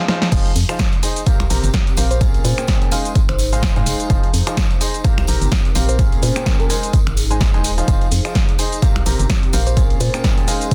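Piano house at 127 BPM in F minor with a swung sixteenth-note feel, this energetic, soulful passage is driven by a clear grand piano riff, its intimate sound carrying audible action noise, sidechain pumping and tape echo, over an up-front punchy electronic kick and an analog drum machine with snare, hi-hat, finger snaps, cabasa and crash. A dark, hollow, organ-like FM bass pumps beneath, while a distant tambourine sits in the background and an airy, breathy pad with chorus enters at 1.3 seconds as the Fm7, C7sus4, Bbm7 and Ab6 changes cycle. A sparkling, bell-like FM electric piano melody with chorus, phaser and tape echo appears from 2.1 to 6.8 seconds and returns at 9.7 seconds, all within a dense, heavily limited, dry mix.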